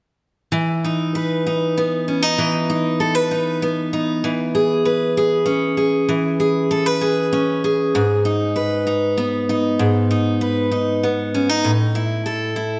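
A picked steel-string acoustic guitar opens at 0.5 s, carrying a tender, romantic pop accompaniment in E major. The pace is unhurried at 65 beats per minute, counted in dotted quarters across a straight 6/8 metre, with tuning set to A4 = 439 Hz. The guitar sits up front with a warm, picked tone, ranging from G#2 to B4 as it moves through E5, C#m7/E, G#m and then A5 at 11.6 s. A wet concert-hall reverb with a 1.9-second decay wraps the instrument in an auditorium glow. This brief passage, cut from a longer piece, runs until 12.8 s.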